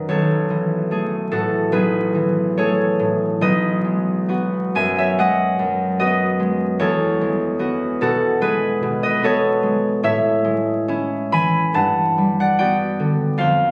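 A concert harp, acoustic, ringing and up front, plays alone through this serene, graceful cut from a longer classical solo piece, fingerpicked in a rubato 4/4 from B1 to B5 over chords moving from Amaj7/B through B6, Eadd9 and Amaj7 to Gmaj7, set in a moderate scoring-stage reverb and captured on a phone in the room with club reverb, vinyl crackle and compression.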